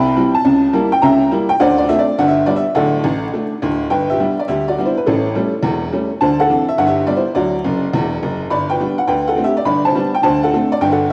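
A jangly, metallic tack piano plays alone and up front in this playful, exuberant stride jazz excerpt in G major, swinging at a brisk 208 BPM and ranging from deep bass notes to bright upper register. Its boxy, short-sustained tone moves through changes such as C#dim7, A7 and D9. It shifts into a new section at 3.9 s and tosses in a honky-tonk fill at 7.6 s. A lush hall reverb gives the piano a long tail, while the home cassette recording adds a layer of vinyl crackle.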